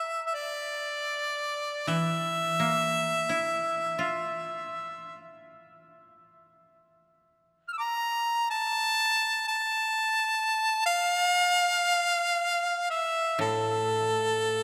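A clear harmonica opens this calm, austere passage of Japanese chamber music in free time, sitting up front with a smooth top, light vibrato and scooped notes in a pop-style solo delivery. At 1.9 seconds a bright, woody koto played with fingerpicks enters beneath it in a lower register as quiet accompaniment. A long, wet cathedral reverb surrounds this fragment cut from a longer piece, giving its spare lines a vast, hushed space.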